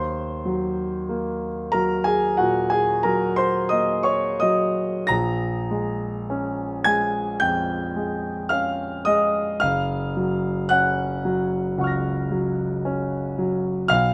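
A light reverb surrounds a clear, polished concert grand piano that sits up front, its deep bass giving weight to the lowest notes. This is impressionist classical music for solo piano, nocturnal and hazy in mood, and the passage is cut from a longer piece. The tempo is slow, between 41 and 57 BPM in 4/4, with a free rubato feel. The piano spans from Gb1 up to Bb6 across the 14.1-second passage. The harmony moves from Ebm6 at the start to Bbm7 at 5.1 seconds and settles on Gbmaj7 at 9.6 seconds, giving the phrase its dusky, floating colour.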